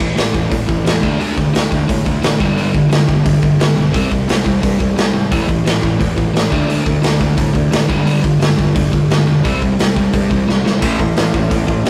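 Rebellious and energetic, this 174 BPM punk rock excerpt in straight 4/4 drives a dark, crunchy overdriven guitar riff up front over a growly, fuzzed picked bass sitting in the background and a gritty, saturated garage drum kit with a punchy kick, medium-tuned snare, hi-hat and splash cymbal in a pumping stone room. The power chords cycle A5, D5, G5 and C5, and after a drum fill at 10.5 seconds a second lo-fi picked guitar joins at 10.8 seconds. The whole thing has the rough, dry feel of a rehearsal-room recording with warm saturation.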